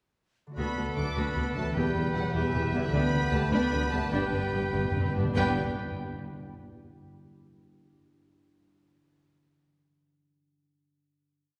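A reverberant concert-hall recording heard from further back in the room carries this brief, soaring, heroic film cue in G major at 100 BPM in 6/8, where a lush, vibrato-rich violin section sings the melody over airy flute, bright oboe, a very quiet second violin line, warm driving viola ostinato, rich cello and woody double bass, mellow French horns doubling the tune at the octave, rolled harp arpeggios, round soft-mallet timpani and tight trombones entering at 1.0 s, slowing from 2.4 s through a timpani fill into a final chord at 5.4 s.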